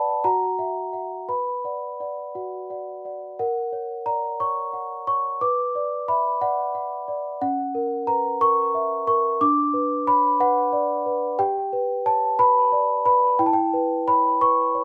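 A rubato 6/8 sway at 60 BPM, counted in dotted quarters, carries this wistful, eerie classical lullaby in B minor, a fragment cut from a longer piece. A solo celesta plays throughout, bell-like and delicate, sitting up front with a slapback echo as it ranges from C#4 to D6. After a brief opening passage, a new section begins at 3.4 s, moving through harmonies such as F#/A#, Bm/D and G before settling on Em6, all captured outdoors with little reverb.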